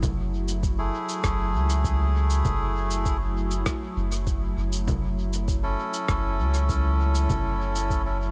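This spacious, meditative slice of ambient dub, cut from a longer piece, opens with a warbling, lo-fi, nostalgic tape-like pad holding sustained chords, heard through chorus and its own reverb, over a deep, round sub bass that sits up front. Alongside them, sampler-style electronic congas, shaker and rim click sound pitched down, muffled and overdriven, with dub echo trailing behind. A thumpy, compressed kick drum, also overdriven, stays in the background, its sound re-recorded in a small room like the hand percussion. At 0.8 seconds a reedy, breathy melodica enters with stabs thrown into dub echo, its nasal, vintage tone adding a wooden-cased character. The harmony rests on F#m9 before shifting to A/F# at 4.9 seconds, all held in a haze of digital ambience.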